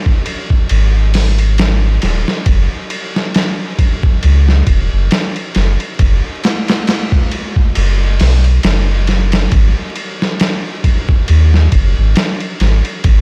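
Dusted with vinyl crackle and a light reverb, this brooding, dark trip hop excerpt pairs a muffled, pitched-down sampler-style drum kit of thumpy kick, medium-tuned snare, hi-hat and ride cymbal, tape-coloured and re-recorded in a small room, with a deep, round dub sub bass of soft, sustained triangle and square wave tone that enters at 0.7 seconds, both sitting up front over a lazy sixteenth-note swing.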